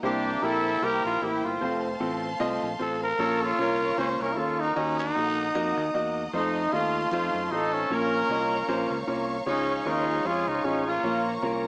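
Heard through a small-speaker sound with a moderate large-studio reverb, this fervent, solemn gospel fragment swings at 153 BPM in Bb harmonic minor, tuned to A4 = 436 Hz. A growling, raspy trumpet leads up front beside a soft-attacked horn section with vibrato, both carrying the melody in a jazz style, while a clear grand piano accompanies, lush bowed strings sustain high chords, and a direct, fingered electric bass holds the low end. At 9.5 s a bright tonewheel organ joins in the background with light overdrive, key click and a slow rotary speaker, as the chords move from C7 through Bbm, Ebm and F7 to close on Bbm.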